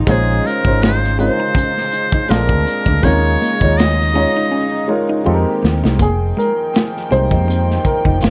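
A buzzy, metal-muted trumpet carries the jazz-style melody with light vibrato, scooped notes and a slapback echo until 4.9 seconds, in this smooth, late-night neo-soul R&B excerpt with a gentle swing. Up front, a gritty, saturated breakbeat kit of finger snaps, hi-hat, tight kick and snare plays a fill from 4.5 seconds, over a round, punchy, foam-muted fingered bass. A natural-sounding baby grand piano with plate reverb accompanies and then takes a short solo from 6.0 seconds, while a twangy clean electric guitar and a reedy, gut-string studio string section sit in the background under a dark, warm production.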